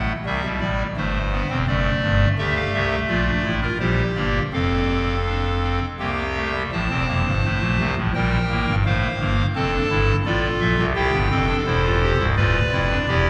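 A straight, steady three-beat pulse drives this contemplative yet purposeful baroque-style four-part fugue, heard as a brief 13-second cut from a longer piece. A solo pipe organ carries every voice on a hollow clarinet reed stop with baroque voicing and a crisp chiff, sitting up front and spanning from deep bass notes to the upper register. Heavy church reverb lets each chord ring through the hall, and the music moves into a second section at 6.7 seconds before ending unresolved on a diminished chord.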